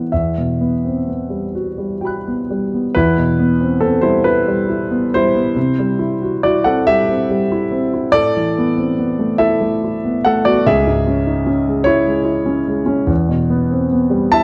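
A solo concert grand piano opens on an E minor add9 chord, setting a melancholic, wistful mood in this neoclassical minimalist fragment, cut from a longer piece, that drifts in rubato 6/8 at roughly 42-50 BPM. Played up front with deep bass and short sustain, the piano moves from E minor through C, Asus2 and C sharp minor before settling back on E minor at 13.1 seconds. A moderate scoring-stage reverb surrounds the instrument, giving the production a dark, warm cast.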